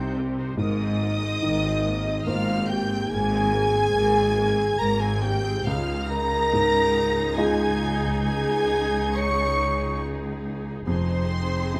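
A moving, bittersweet cinematic film score excerpt at a rubato 70 BPM in 3/4, where a distant, rich violin section carries the high melody over a clear second violin line shared with a hollow, mellow flute in the background, while a felt-muted upright piano with audible action noise, a lush viola section, dark, soft-attacked French horns holding sustained chords, a background cello section and smooth double basses support the Cm, Abadd9, Dbadd9 and Fm7 harmony in a moderate scoring-stage reverb captured with close, detailed microphones.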